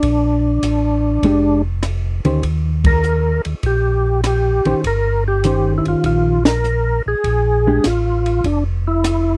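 A lightly overdriven, percussive tonewheel organ with a slow rotary speaker carries the soulful, bluesy melody of this swinging soul jazz organ trio excerpt, over a round, dark organ bass line and an acoustic cocktail drum kit with a high-tuned snare and punchy kick, while a clean, compressed hollow-body jazz guitar accompanies from 1.2 to 7.8 seconds and the band hits accents at 2.7 and 6.3 seconds, all captured in a close, dry 1970s-style studio sound.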